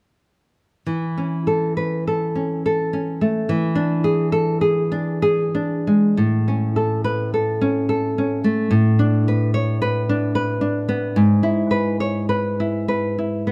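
In a three-beat metre played with free, elastic rubato, this romantic piece for solo classical guitar unfolds at an unhurried pace. The nylon-string guitar is the only voice, fingerpicked and sitting up front, with a woody, acoustic tone and the slightly dulled character of old strings. The mood is sunny and warm, moving through A over E and E7 in its opening phrase before a new passage begins at 6.2 seconds on A, then Bm7 over A and E over G sharp. The guitar enters at 0.9 seconds and carries on to 13.5 seconds, ranging from its low register up to C sharp in the fifth octave. A moderate recital-hall reverb gives the notes a gentle halo, and the overall production leans dark and warm. This passage is cut from a longer piece.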